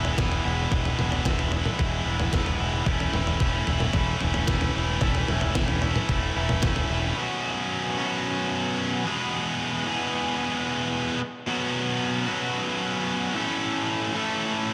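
A distorted, double-tracked electric guitar riff opens this wistful, jangly indie rock excerpt in E major at 112 BPM, together from the first moment with a growling, overdriven picked bass and a detuned 8-bit drum machine with a thumpy kick, medium-tuned snare and toms carrying a tape-warm, sampler-style character. The drums drop out at 6.9 seconds and the bass at 7.1 seconds, leaving the bright, high-gain guitar up front to carry the harmony from E and A/E through Bsus2 and back to A until 14.7 seconds. A moderate cathedral reverb soaks the whole mix, giving it a dreamy sheen.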